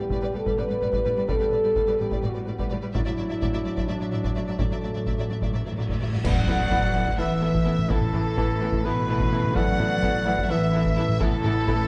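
Driving in an uneven 7/8 with a straight feel, this heroic, dark cinematic cue, cut from a longer epic orchestral score, rides on close, dry taiko drums struck with heavy sticks. Beneath them a bowed double bass section holds a low pedal, and a distant cello section slides with portamento in the background. Lush violins carry the melody with vibrato over a softer second violin line and a viola accompaniment, while a roomy French horn section and a smooth-topped trombone section sustain the chords. Very quiet, round timpani on soft mallets open the cue and return for a fill from 2.9 seconds, joined by a cymbal swell, clash cymbals and concert bass drum. Around 6.1 seconds a huge reverse cymbal and sub drop lead into a full accent and impact, as a pure, hollow concert flute adds a second line and a mellow solo trumpet punctuates with stabs. The production is warm, set in a moderate scoring-stage reverb.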